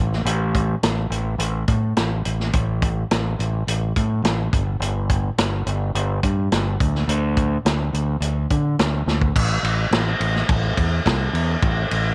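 Psychedelic rock in A minor at 106 BPM, dark and mysterious, this short cut pairs a bright, growling fingered electric bass with overdrive against a vintage acoustic drum kit with dark cymbals, a punchy kick and a rolled-off top, both up front in light reverb, with a drum fill at 9.1 seconds ushering in a new section at 9.3 seconds.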